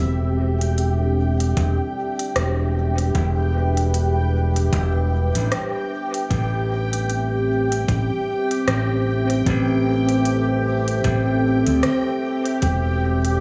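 Deep and meditative, this ambient dub excerpt moves at 76 BPM in E minor with a swung 16th feel: a moody, detuned sawtooth pad sustains Em7 and Am7 chords under chorus, a bubbling, resonant stepped-filter texture glimmers above it, and a punchy, bright fingered electric bass sits up front, while crisp hi-hats and rim clicks from an electronic kit trail dub echo from 0.6 seconds and an overdriven, layered kick murmurs in the background from 1.6 seconds, the whole mix soaked in dreamy plate reverb.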